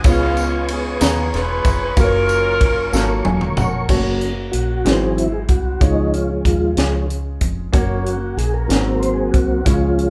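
The ensemble plays together live in one large studio with moderate reverb, a slow gospel in 6/8 at 62 BPM in F# major with a reverent, hopeful mood, cut from a longer piece. A mellow, up-front saxophone section carries the melody with vibrato and a soft attack until 3.3 seconds over woody upright piano, a deep, foam-muted fingered electric bass and a tight funk kit with a high-tuned snare, while a jingly tambourine sits in the background and the drums and piano both fill from 2.9 to 3.9 seconds. At 3.9 seconds the tonewheel organ, smooth and clean with key click, chorus vibrato and a slow rotary speaker, steps forward for a solo over chords moving through F#, G#aug7, C# and G#9.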